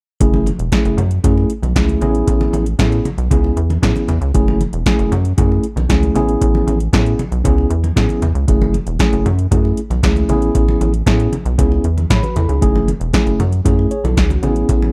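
Early-eighties boogie funk at 116 BPM in 4/4 with a straight feel, this slick, funky excerpt in F# minor alternates between F#m9 and Amaj9 chords. A mellow tine electric piano sits up front with a clean, warm tone, adding a short fill between 11.8 and 12.6 seconds. A rubbery, hollow square-wave bass bounces beneath it with a resonant filter pluck and a fast attack, reaching down to E1. The electro analog drum machine is overdriven and punchy, pairing a deep kick and a punchy snare with metallic hats. Low-tuned, damped congas with a thick skin sit in the background, all in a dry, close 1970s-style studio sound.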